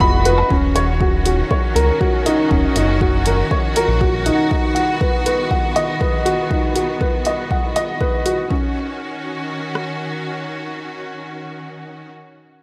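Piano and strings electronica in Eb minor at 120 BPM, melancholic and intimate, cut from a longer piece. A dark, woody upright piano with audible action noise and a slightly detuned, boxy tone carries an up-front riff with tape echo over smooth, bowed string chords with vibrato, while a round, deep analog bass pumps beneath them until 4.3 s. A deep house drum kit with a punchy kick and rim click, plus electronic hi-hat and woodblock, drives the groove until 9.9 s, as the chords move between Ebm7 and B/D# inside an echo chamber reverb.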